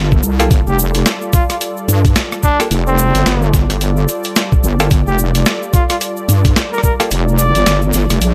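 A warm, detuned sawtooth pad holding a Gm9 chord with chorus and sidechain pumping, together with a heavy, saturated square-and-sine wobble bass, opens this gritty, swaggering glitch hop excerpt in G minor at 109 BPM with a swung 16th feel, soon joined by a thumpy, pitched-down electronic kick up front, a grainy, bright tube shaker, stringy muted clav stabs through a combo amp with dub echo, a compressed boom bap sampler-style kit of hi-hat, rim click and high-tuned snare, and a mellow trumpet melody with light vibrato and dub echo entering at 0.7 s, set in a digital ambience, before the kick drops out at 7.1 s.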